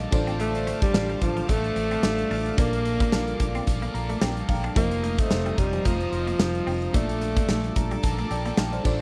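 1980s-style pop with a romantic, glossy mood, this short excerpt sets a clear, scooped alto saxophone melody up front from 0.4 to 8.0 seconds over a huge arena drum kit with punchy kick, bright cymbals and tambourine, and a dark, round, foam-muted fingered bass. A lush, warbling FM electric piano with a soft pad layer and chorus adds fills, while a shimmering pulse-width pad, a twangy clean guitar riff with analog chorus and tape echo, and a biting overdriven guitar sit in the background. The harmony moves through Dm7/A, Bbmaj7 and F7sus4 in a dry, up-close mix.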